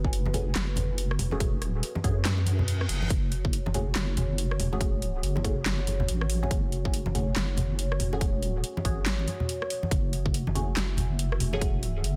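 A dark analog pad, a soft wobble bass and a punchy electronic kick open this meditative slice of deep dubstep at 141 BPM in 4/4, swung and felt in half-time in F# minor. The wobbling bass sits up front, detuned and compressed with a chorus sheen, while the moody pad holds sustained chords under chorus and phaser, its slow attack and sub octave adding weight. The dubstep kit brings a huge snare, metallic hats, handclaps and rim clicks, and with the kick it shares a tape-warm, layered character and a touch of studio reverb. A muted, filtered dub chord stab decays through phaser, analog chorus and dub echo with a moving notch, and close acoustic congas and bongos fill out the percussion. A reverse cymbal appears at 2.5 seconds over the single F#madd9 chord, set in a dense, heavily limited modern master.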